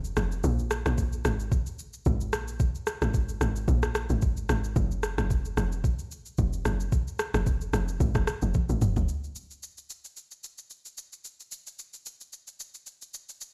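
This amapiano piece, cut from a longer track, carries a soulful, deep mood over a swung sixteenth-note feel in 4/4. It opens on a drop, with a punchy FM log drum bass sitting up front: its fast attack and decaying tail give a percussive snap, and a noise layer colours the low notes. Beside it, an electronic R&B-style drum kit plays a soft kick, rim click, shaker and toms, with a tape-warm, produced polish, and the kick drops out briefly near the start. A drum fill arrives at 8.5 seconds, and the log drum bass stops at 9.1 seconds, leaving the drums to carry the closing section alone. The overall sound suggests a big system in a bare room, with a large studio reverb surrounding the close, dry parts.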